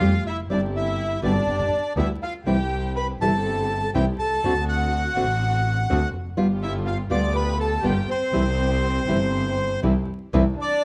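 A reedy, bright bandoneon carries the melody up front in this nostalgic, playful tango fragment, which moves in a loose rubato feel as the harmony travels from C through D7 and G7 before settling back on C. Beneath it a dark, expressive chamber violin section sings a second line with vibrato, a fingerpicked nylon-string guitar gives full-bodied accompaniment complete with finger squeak, and a boxy, intense bowed double bass anchors the low end, while a lush, woody studio string section adds stabs in the background. Vinyl crackle and a large studio reverb lend the recording a dark, warm air.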